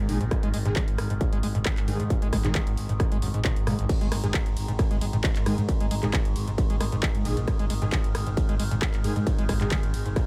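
A distorted, up-front kick drum heads a dense, digitally reverberant mix in this driving peak-time techno excerpt, running straight in 4/4 at 134 BPM with a relentless mood. Around the kick, an analog drum machine with a tape-warm character, re-recorded in a small room, supplies crash and ride cymbals, hi-hat, handclaps and rim clicks. Two basses share the low end under sidechain pumping: a thick, growling FM bass sustains between G#1 and G#2, while an overdriven acid bass riff with a squelchy, resonant filter sweep spans G#1 to G#3, thickened by lush chorus. Above them an overtone-sweeping drone of sawtooth and sine tones swells in on a slow attack and lingers on a long release, shimmering with chorus and reverb. In the background, an aggressive detuned sawtooth rave stab carries chorus, reverb, 12-bit sampler grit and delay, with a G#5 chord marking the opening moment. The parts all enter within the first 0.3 seconds and play on toward the close of this single 10.3-second section, cut from a longer piece.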